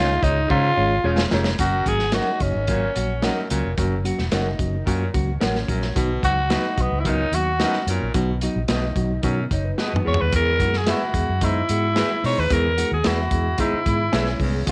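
Light studio reverb surrounds this short, uplifting cut from an uptempo 1960s-style soul piece in F# mixolydian, moving at 110 BPM in a straight 4/4 with a joyful lift. A raspy, gritty tenor saxophone sings the melody up front, and a clear baritone saxophone with vibrato adds a low riff, joining at 0.5 seconds as the first drum fill begins. Beneath them, a mellow tine electric piano heard through its built-in speakers supplies the accompaniment. Two dark electric guitars, both slightly broken-up, sit in the background: one plays a fingered riff and the other picks stabs through a small old amp. A round, foam-muted vintage electric bass with transformer saturation anchors the low end. A crunchy breakbeat kit with a tight kick and rolled-off top enters at 0.2 seconds and adds another fill at 9.8 seconds, while the chords move from C# to F#, B and E.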